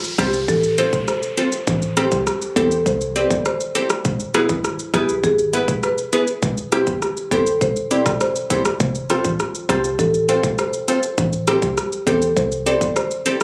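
Captured on a phone in a room, this short dancehall excerpt carries a club-style reverb and a compressed sheen. A bouncy, tough groove comes from an electronic drum kit that sits up front, its tight kick, metallic hi-hats, rim click and shaker roughened by overdrive, while an electronic downlifter sweeps through the first 4.0 seconds. From 0.2 seconds, a woody rosewood marimba carries the melody through a digital delay, over crisp, detuned wavetable chord stabs that pump against the beat and a fingerpicked nylon-string guitar playing classical arpeggios. Underneath, a hollow, dark FM bass with an organ-like, percussive attack holds the low end until 12.9 seconds. The harmony cycles through F, Am7, E and C/E before returning to F and Am7.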